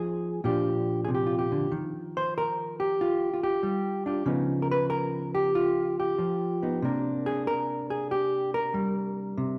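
A hollow-body jazz guitar sounds alone from the opening moment, playing a short stretch of solo jazz in a cool, moody vein at an easy swung pace. Its electric tone is dark and clean, fingered rather than picked, and it sits up front in the sound. The guitar voices rich extended chords, moving from Bb69 through Ebadd9 and Db9 before settling on Csus2 at 6.8 seconds. Its range reaches from low Bb2 up to C5, giving the harmonies depth beneath a brighter upper register. A large studio's reverb wraps the instrument in a lingering, airy space, and the passage breaks off at 9.6 seconds as a fragment of a longer performance.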